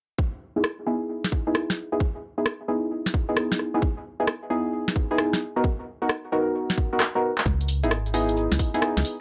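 A dry, gritty hardware recording with light reverb frames this soulful, skippy two-step garage cut at 132 BPM, swung on the sixteenths, taken from a longer piece. A deep, mellow chord stab with chorus, cassette tape and tape echo carries a filter sweep over Emaj7/B and Bmaj7, while a tight, layered kick re-recorded in a large room and a punchy analog drum machine of snare, handclaps, hi-hat, rim click and cabasa sit up front. A drum fill arrives at 7.0 seconds as the kick drops out, and a hollow, organ-like FM bass enters at 7.5 seconds on C#m7.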